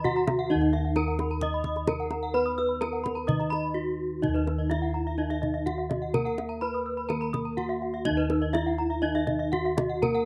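Hypnotic and shimmering, this fragment of Balinese gamelan moves at 118-132 BPM in 4/4 with a straight feel, in Eb pelog tuned to A4 = 438 Hz. A bright, close-miked bronze metallophone struck with a horn mallet carries the melody up front with paired-tuning beats, while two arpeggiating metallophones, one rung with a wooden mallet and one airy and horn-struck, add slapback echo in the upper register. Mellow bossed gongs played with padded beaters hold the bass, a mid-forward wooden-mallet metallophone joins the accompaniment at 0.5 seconds, and a tight, dry kendang drives the pulse in an outdoor setting with little reverb.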